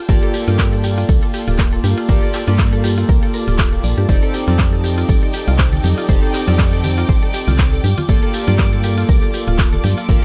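Deep house at 120 BPM in G minor with a late-night, hypnotic mood, built on a punchy overdriven electronic kick up front, a hollow organ-like FM bass, chorused polysynth stabs with analog delay, a woody mallet-like synth pluck playing arpeggios, handclaps and smooth hi-hats, a grainy shekere, lush symphonic strings in the background, a shimmering string-machine violin layer entering at 4.1 seconds and bright congas from 4.5 seconds, all over Gm9 and F13 chords with sidechain pumping on the melodic parts and a dry, gritty hardware sound.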